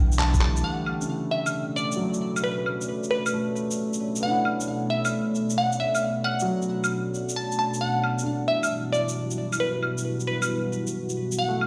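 A felt-muted upright piano and a deep, dark ambient pad open this rainy, wistful future garage excerpt together, joined for only the first 0.6 seconds by a round sine sub bass, all three pumping against the sidechain. At 134 BPM in 4/4 with a 66% swing on the sixteenths, the piece sits in B minor, moving from Bm9 to Emadd9/B at 7.8 seconds. The piano stays soft and intimate, its action noise audible beneath an analog delay, while the warbling, detuned sawtooth pad swells in slowly with chorus and its own reverb, sitting up front. Compressed, pitched-down electronic shaker, handclaps and claves enter at 0.1 seconds with a muffled, sampler-style sound close to the listener, and a band accent lands at 0.2 seconds as a glassy wavetable pluck takes the melody. That crystalline, bright lead, coloured by ring modulation, a filter sweep, chorus and tape echo, decays after each fast attack, and the whole mix is bathed in a digital room reverb and the stony ring of a bare room heard through a big sound system.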